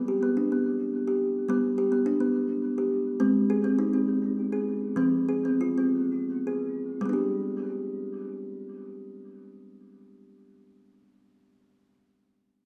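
A lone kalimba, woody and ringing with a hollow-box body and up front in the mix, plays a meditative, hypnotic world piece in 3/4 at 79-106 BPM, easing into a slowdown from 3.2 to 7.0 seconds as the chords pass from G through Ab and F minor back to G, its tone bathed in diffuse ambient delay and the dark bloom of a recital-hall reverb in this excerpt from a longer piece.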